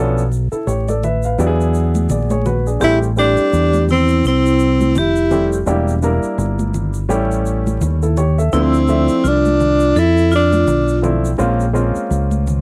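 A lazy swing on the sixteenth notes gives this smooth, relaxed jazz-hop passage, cut from a longer hip hop piece, its unhurried sway in four. A dark grand piano with short sustain and a mellow, vintage cassette-tape tone plays the accompaniment from the start, over a deep, round fingered electric bass that sits up front with a direct, amped sound. Egg shaker and congas, close and dry and played with hard hands, come in just after. At 2.8 seconds a warm, close-miked tenor saxophone takes the solo melody with light vibrato, joined by a metallic, ringing vibraphone played with hard mallets and slow motor vibrato, both carrying the same cassette colour as the piano. The harmony moves through chords such as Am7, Em7b5 and Dm9, with the horn and vibraphone stopping at 11.0 seconds, and the whole has a home-recorded cassette feel with vinyl crackle and very little reverb.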